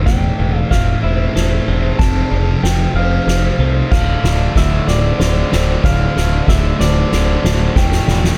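A growling, overdriven fingered bass sits up front in this brooding, cathartic post-rock passage, which is cut from a longer piece and moves at 62 BPM in a straight 6/8 in D minor. Beside it, a soft-mallet drum kit with a fat snare, boomy kick, crash and ride sounds natural and hall-like, driving a build-up that plays as one long drum fill through the whole 8.4 seconds. A thick, bright fuzz guitar carries the low riff, and a tight distorted guitar joins that riff role from the background starting at 3.9 seconds. Over this, a slightly broken-up, lo-fi guitar through a small old amp plays the melody with tape echo. A very quiet, compressed twelve-string electric guitar and a metallic, ringing vibraphone with slow motor vibrato and tape echo add arpeggios. The harmony moves from Am7/E to F, then Dm7 and back to Am7/E, and the mix is dry with little reverb.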